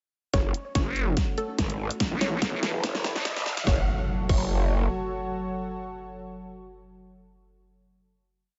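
This short, menacing heavy wobble dubstep piece in F# minor opens at 0.3 s with a punchy electronic kick and a layered kit with a huge snare, closed hi-hat and crash, set in a half-time beat at 144 BPM with a light swing. Beneath them, an aggressive, saturated growl bass with overdrive and chorus plays modulated phrases with changing wobble speed, and a nasal, resonant vowel-sweep wobble bass soon joins briefly to answer it. Above, a lush, warbling unison pad with chorus and sidechain pumping holds sustained chords that move from F#m to Esus4 and back, while a mellow, detuned unison pluck repeats a riff melody in octaves through a digital delay. The opening build-up carries a drum fill and a filter sweep, and a background riser and impact arrives at 2.0 s to lead into the final F#m chord at 3.7 s, after which the drums and the growl bass fall away. The pad and pluck carry the close in a light digital ambience with the top end trimmed.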